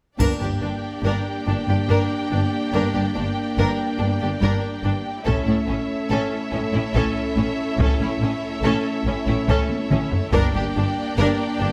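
Hard-stick taiko hits and a bright triangle open this dramatic, epic orchestral film cue in G minor at 95 BPM in 12/8, where a distant, lush violin melody and a focused second violin line sit over smooth viola accompaniment, dark, soft-attack French horn chords, sustained strings and a bass of clear double basses with cellos in the background, the taiko returning at 5.3 s as the build-up moves from G minor to A and back, with a drum fill near the end of this cut from a longer piece.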